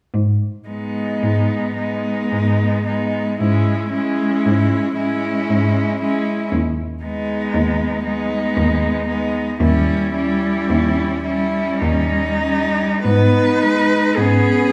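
In a slow, rubato 3/4 that drifts between 46 and 59 BPM, this elegiac, melancholic classical passage for cello ensemble in G# minor opens with a clear, even bowed cello bass at 0.1 s, joined at 0.7 s by three more bowed cellos. Up front, a rich cello with vibrato and a smooth top carries the melody, while a second line with a soft attack and expressive portamento sits just beneath it, and a more distant, focused accompaniment fills in the middle register. The harmony moves from G#m through G#m/D# to a tense D#7b9 at 9.6 s before settling back on G#m, all bathed in the wet reverb of a recital hall in what sounds like a fragment of a longer piece.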